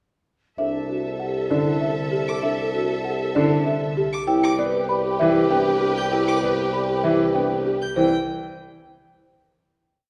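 A woody, round marimba carries the melody in this short, bright and hypnotic minimalist classical piece at 195 BPM in 6/4, its repeated short cell set against metallic vibraphone arpeggios with slow motor vibrato. A bassoon holds long, soft-attack bass notes on C beneath airy alto flute pulses and lush, swelling held chords from a distant string section, while a clear grand piano joins with its own repeating accompaniment at 1.5 seconds and a solo violin adds expressive, portamento-tinged arpeggios from 2.3 seconds. Set in C lydian, the harmony moves from C69 to G/C before settling on a final C chord at 8.0 seconds, all heard from further back in a reverberant scoring stage.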